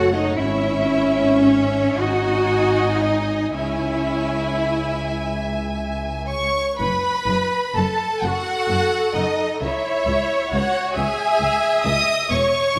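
Classical string orchestra music, a slow romantic movement in 6/8 that moves with a flexible, rubato sense of time and carries a solemn, melancholic mood. The violins sing the melody high above the ensemble with a soft attack and expressive vibrato, while a second violin section traces a focused, smooth-topped line beneath them. Violas fill the middle with an even, close accompaniment, sitting a touch forward of the other strings. Cellos and double basses anchor the low end together, their bowed tone lush and focused. The harmony settles on C#m/G# and C#m before shifting to F#m as a new section opens at 6.8 seconds, then returns to C#m at 9.6 seconds, all bathed in the generous reverb of a scoring stage in this short excerpt from a longer piece.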